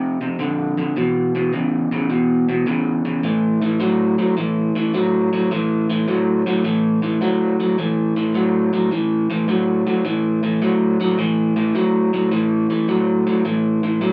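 Brooding and smoky, this blues excerpt swings at 106 BPM in 4/4, carried by a lone electric guitar through a small old amp that sounds bright, twangy and slightly broken-up, picked up front in the low register. Power chords on F, E and A shape the brief passage, which shifts into a second section at 7.8 seconds. A wet small-room reverb gives it the feel of a band playing live in one room.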